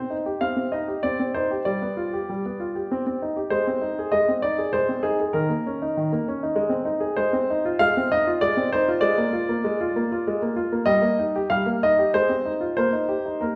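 A clear, polished baby grand piano plays a graceful, elegant classical-period sonatina excerpt alone in 3/4 at 97 BPM with a rubato feel, moving from C minor to Eb major at 7.2 s within its Eb3 to F5 range, heard from further back in a wet recital hall with a 1.5-second reverb.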